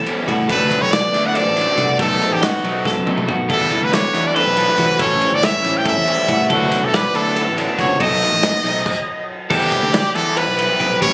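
Captured on a phone in a club-like room with little reverb, this playful, wistful slice of math rock and midwest emo moves in a straight 7/8 over chords such as D69, B7 and Em11. A forceful, brilliant trumpet with vibrato carries the melody up front from 0.5 seconds, while a loose indie kit with dark cymbals and a punchy kick throws in a fill at 2.9 seconds and a round, fuzzy fingered bass sits underneath. In the background, a slightly broken-up, chorused guitar through a small old amp plays until it drops out at 9.5 seconds, alongside a twangy twelve-string playing delayed arpeggios and a double-tracked, overdriven garage guitar riff.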